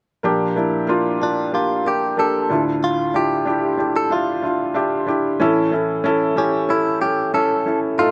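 A twangy clean electric guitar, recorded direct and treated with vibrato, carries the melody from 1.2 seconds over a felt-muted upright piano whose soft, intimate tone and audible action noise underpin this bittersweet yet driving pop excerpt at 93 BPM, moving through Bb6, Dmadd9 and A in a dry, close outdoor sound.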